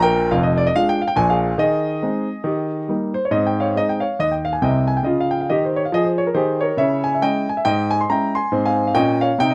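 Exuberant and playful, this brief cut from a longer stride-piano jazz piece swings along at 139 BPM in Ab major, with a solo grand piano, polished and up front under light reverb, ranging from deep bass to bright treble as it moves from a Bb7 opening through Ab, Db and a darkened Dbm before settling home on Ab, its second phrase starting at 3.3 seconds.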